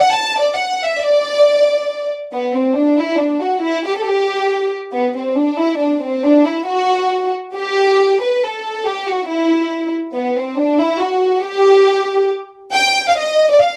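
A dark, intimate violin section plays alone in a festive, proud Mexican folk excerpt in G major at 138 BPM in a lightly swung 3/4, its bowed sul tasto tone soft in attack with light vibrato and a smooth top, set up front with close, detailed microphones in moderate studio reverb, with lossy compression artefacts, running through changing sections until it is cut off at 13.8 seconds.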